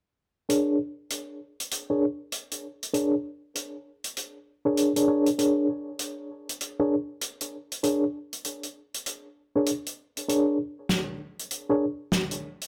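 Playful and swaggering, this glitch hop excerpt moves at 98 BPM in 4/4 with a 16th-note swing that gives it a loose, strutting gait. A tine electric piano plays stabs between D4 and C#5 from 0.5 seconds to 11.8 seconds, its worn, slightly out-of-tune tone colored by medium tremolo, vintage 12-bit sampler grit, a low-pass filter and delay, heard through a combo amp and placed up front. Alongside it, an acoustic country drum kit carries hi-hat and a fat snare with a natural small-room character, also up front, running until 12.7 seconds. The harmony rests on a Bb7#9 chord throughout this single section. A moderate studio reverb ties the parts into a shared space.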